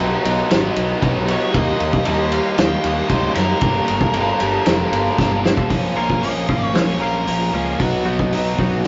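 Cathartic and brooding, this quiet-loud alternative rock excerpt opens with a double-tracked overdriven guitar riff bathed in spring reverb, over growly fuzz bass and a loose, punchy indie drum kit with dark cymbals; a distorted octave-fuzz lead guitar carries the melody from 1.3 s, a drum fill at 5.2 s leads into a lead guitar solo at 5.7 s, and a bright, twangy twelve-string electric guitar adds clean background arpeggios near the close, the whole captured in a rough, muffled rehearsal-room sound with stone room reverb.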